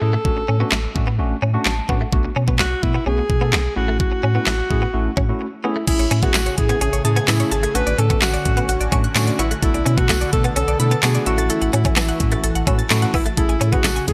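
Upbeat and euphoric, this dance-pop excerpt moves at 128 BPM in a straight 4/4 in A major, wrapped in light reverb and a bright 1980s-style digital sheen. A breathy, intimate alto saxophone carries the melody through a digital delay over a clean tine electric piano with subtle chorus and a twangy, direct-recorded electric guitar riff. A round sine sub bass sits beneath a layered electronic pop kit that stays up front, with a knocking kick, fat snare, crisp hats, handclaps and crash cymbal. The electric piano, bass and later layers pump with sidechain compression, and the chords move through Dmaj7/A, Bm7 and F#m7/A before landing on Amaj7. The electric piano adds a brief fill, and a short break leads into a fuller section at 5.9 seconds. There, a detuned, sawtooth-edged pad with a filter swell and a woody FM synth pluck playing chorused, delayed arpeggios join in the background. A jingly, close and dry tambourine enters at 6.3 seconds to add sparkle to the lift.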